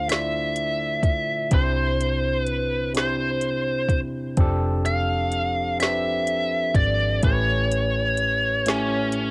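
A hazy home cassette recording with light reverb frames this short cut from a longer slow R&B piece in 6/8, moving at 42 beats per minute with a yearning, late-night mood. Up front, a biting lead guitar carries the melody with a bright, overdriven, picked tone, its tape-softened edge reaching from C#4 up to F5. Beneath it, a barky tine electric piano played clean through a combo amp supplies the accompaniment, also sitting forward in the mix. A vintage muted fingered electric bass anchors the low end with a dark, round, foam-muted sound, while a smooth electronic drum kit enters at 0.1 seconds with a soft kick, woody snare and metallic hats, all tape-warm and close. The harmony drifts from Dm9 through C and F69 before settling on A7, leaving the phrase hanging with unresolved longing.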